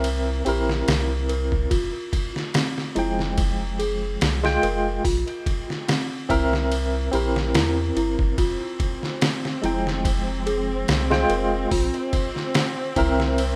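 A dark, hypnotic trip hop groove opens at once, with a compressed, pitched-down, gritty sampler-style drum kit sitting up front. Its thumpy kick, medium-tuned snare, hi-hat and ride carry the sound of a large room, and they ride a slightly swung sixteenth-note feel in 4/4. Beneath them a soft dub sub bass hums deep and round. A bright, barky tine electric piano plays the accompaniment, lightly overdriven through a combo amp and coloured by tremolo, tape echo and vintage 12-bit sampler grit, as the harmony cycles through C7, Fmadd9 and Bbsus2. A small, bell-like celesta with medium felt hammers spins delicate, sweet arpeggios through a delay in the background, and at 8.4 seconds a smooth, bowed chamber string section enters with sustained chords and vibrato. The whole piece is a rough home demo mix with little reverb, cut from a longer track.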